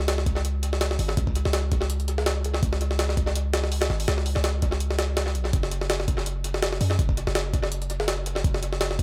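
A swung sixteenth-note groove in 4/4 drives this raw, nostalgic slice of drum and bass and jungle, cut from a longer piece. The jungle sampler-style drum kit sits up front, its hi-hat, thumpy kick and high-tuned snare sounding compressed, pitched up and gritty, with an analog delay trailing behind them. Underneath, a long sustained 808-style bass carries a deep, mellow sine tone with a fast attack that then decays, ranging from F#1 to F#2. Both parts play throughout the nine seconds, though the kick drops out between 4.8 and 5.5 seconds before returning. Light reverb and an echo-heavy mix shape the sound of the whole passage.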